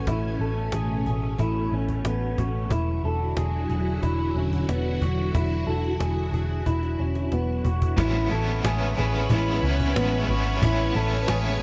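A phased string machine swirls through sustained Amaj9 and E9 chords in this ethereal dream pop excerpt at 91 BPM in A major, joined from the start by a slightly broken-up, compressed electric guitar playing arpeggios through subtle chorus and digital delay. A round, foam-muted vintage bass sits up front beside a snappy, close and dry cajon, which plays a fill from 6.7 to 8.0 seconds before a bright overdriven guitar enters with tremolo and analog chorus. At 9.3 seconds a very quiet reversed, granular texture swells in, all set in a dark production with light reverb and digital ambience.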